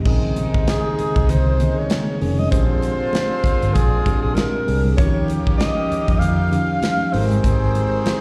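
A mellow tine electric piano with slapback echo opens this silky, bittersweet fragment of lush 1970s-style soul, joined almost at once by a very quiet, phased string machine holding sustained chords, tight jazz-style horn stabs, a dark, round, foam-muted fingered bass, a punchy, polished acoustic drum kit up front and compressed, saturated congas, with a swung 16th-note feel. At 0.7 s a breathy, close-miked alto saxophone enters with an intimate, whispered solo line full of vibrato and scooped notes, carrying slapback echo like the keys and horns. The chords move from Bbm11 through Bb13 and Eb9 to Abmaj9, and the band sounds as if heard live through a venue's PA in a recital hall with light reverb.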